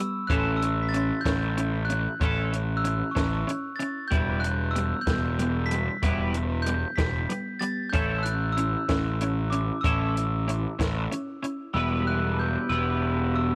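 Indie rock in 6/8, this short cut from a longer piece has a cool, moody air and the intimate grain of a home recording on cassette in a small room. A double-tracked twelve-string electric guitar plays the riff from the first moment, bright, clean and twangy with a compressed, picked edge, while a glockenspiel struck with soft plastic mallets carries the melody high above in a dark, smooth, bell-like ring softened by tape echo. From 0.3 seconds a fuzz picked electric bass sits up front, overdriven, warm and punchy, alongside a compact cocktail drum kit of hi-hat, punchy kick and high-tuned snare that sounds dry and natural. The harmony moves between A and Em, and the drums stop at 11.6 seconds as a brief closing section begins at 11.8 seconds. Guitar, glockenspiel and bass carry on to the end, keeping the hazy, tape-worn mood intact.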